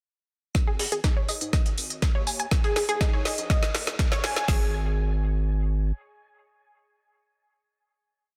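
Progressive house at 122 BPM, driving and expansive, built as a short build-up from 0.5 seconds where a drum fill and a filter sweep on the bright, detuned analog pluck arpeggio unfold together over G#5 and F# chords, the pluck carrying chorus, 12-bit grit, dub echo and sidechain pumping on its 16-step sequence. Underneath, a round, wave-folded analog bass plays a pumping dotted rhythm, while an up-front deep house kit drives a four-on-the-floor kick with a woody snare and smooth hats, layered with a second programmed kit and a gritty, tape-toned sampler breakbeat with tambourine tucked in the background. The drums and pluck drop out near 4.5 seconds, leaving the bass to ring on as the final note in a dense, heavily limited mix with light digital ambience.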